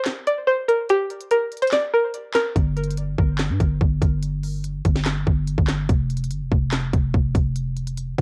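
Menacing, eerie trap at 144 BPM in a half-time feel in G minor: this excerpt opens with a break where a bright, twangy, string-like resonator pluck carries the melody through chorus, a low-pass filter, tape echo and cassette saturation, and stops at 2.5 s. An up-front electronic trap kit with a hard-clipped kick, sharp snare, crisp hi-hats and handclaps, also tape-coloured, runs nearly throughout. A growling, buzzy 808-style bass with a fast attack enters at 2.6 s, all in a dry, close home cassette recording.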